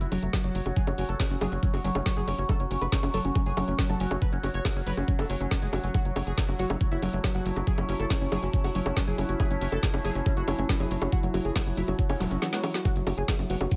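Psychedelic trance at 139 BPM in F# minor, hypnotic and psychedelic, driven by an up-front knocking electronic kick and a drum kit of woody snare, bright hi-hats and bongos, both overdriven, over a tight, punchy, saturated sawtooth sequencer bass, while a thick, detuned unison lead with vibrato runs through phaser, cassette tape and delay, an evolving, resonant drone with moving overtones sustains chords, a nostalgic, lo-fi warbling pad and a dark wave-folded pluck with a moving notch sit in the background, and the lead, drone, pad and pluck pump with the sidechain, before a very quiet swell and zap arrives around the drum fill at 12.4 seconds and a faint formant-sweep wobble bass surfaces at 13.5 seconds, all inside a digital ambience.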